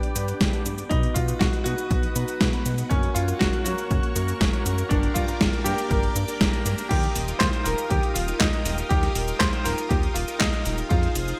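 A bright, brilliant concert grand piano with deep bass carries the melody through 12-bit sampler grit and digital delay in this playful, sunny italo disco excerpt at 120 BPM, over an overdriven, up-front digital drum machine with gated reverb, a punchy analog electronic kick, a mellow chorused synth bass, glossy polysynth stabs and lush string-machine chords, with the last two set in the background and filter-swept through the first 6.9 seconds before the harmony moves to Ebadd9, the whole mix carrying a moderate plate reverb and a 1980s-style digital production.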